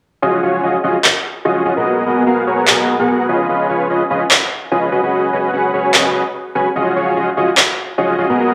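Future bass at 147 BPM in Eb minor, a dreamy, lush passage cut from a longer piece, with a half-time feel and a light swing on the sixteenths. A huge, detuned supersaw riff with a sub octave sits up front from 0.2 s, shaped by a low-pass filter and dub echo as it moves through Ebm11, Db9 and B69 before returning to Ebm11. Layered, overdriven electronic handclaps join up front at 1.0 s, and the whole mix is set in a wet digital room reverb.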